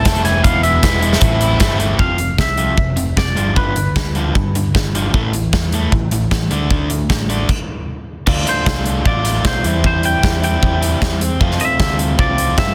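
Bittersweet and restless, this short indie rock excerpt moves at a brisk, straight pace in four. A clean, twangy lead guitar carries the melody through lush chorus and analog delay, playing from the start until 4.9 seconds and returning at 8.5 seconds. Beneath it, an up-front overdriven guitar drives a compressed, picked riff throughout, while a brighter second overdriven guitar sits in the background with its own chorus and delay, dropping out after the opening 2.0 seconds. A dark, round hollow-body bass anchors the low end, and a big, airy, polished drum kit with a punchy kick, medium-tuned snare, hi-hat and crash sits up front. The harmony shifts from minor colors into open power chords, a brief stop lands at 7.5 seconds, and the dry, dense, heavily limited mix keeps every part close and forceful.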